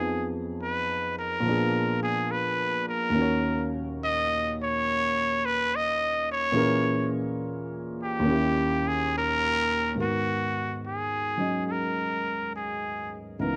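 A trumpet with a straight mute carries the melody up front, its nasal, raspy tone touched with a light vibrato and a growling edge beneath a smooth top. This melancholic, intimate jazz fragment, cut from a longer piece, moves at an unhurried swing. A baby grand piano accompanies throughout, its warm chords ringing with long sustain beneath the horn. The muted trumpet takes a solo through the opening 10.0 seconds over a chain of minor and altered dominant harmonies. At that point the music settles onto a G#m9 chord and a new section begins, running to 13.6 seconds. The sound is dry and close, like a 1970s studio session, with only a small room's reverb around the two instruments.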